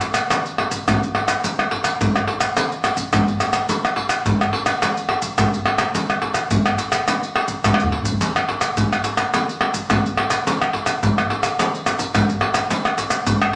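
Samba percussion at 106 BPM in a straight 4/4, lively yet bittersweet, with maracas, pandeiro, a deep surdo and tamborim played up front with hard hands in a vintage, band-limited acoustic sound, set in a wet studio reverb, with a drum fill at 7.6 seconds in this short cut from a longer piece.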